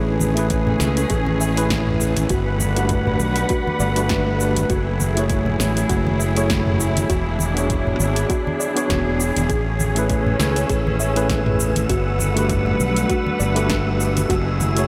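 Swung sixteenths drive this blissful, smooth sunset chillout excerpt, where an overdriven electronic kick and a deep house kit of metallic hi-hat, punchy snare, cabasa and toms sit beside low-tuned congas beneath a growly fuzz fingered electric bass placed up front, while a mellow tine electric piano carrying 12-bit sampler grit and tape echo, veiled muted strings holding lush chords, and a very quiet, round pluck playing arpeggios move through Amaj9, Gmaj9, F#m9 and E13, with an airy, wind-like noise texture drifting in at 10.0 seconds and the whole mix soaked in huge, dreamy reverb.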